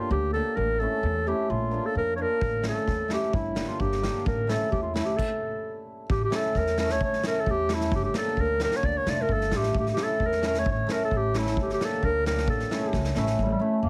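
A mellow, classical-style clarinet leads up front in this soulful, bittersweet klezmer excerpt at 131 BPM in A phrygian dominant, over a woody, gut-string pizzicato upright bass and a shimmering, hammered cimbalom that moves through G minor, A and B-flat. A street-band drum kit with a boomy kick and dark cymbals joins at 2.4 seconds, and the band falls into a full stop from 5.2 to 6.1 seconds before a second section that touches D minor and closes on a drum fill at 12.9 seconds. The sound is heavily compressed, with a radio-like quality and moderate studio reverb.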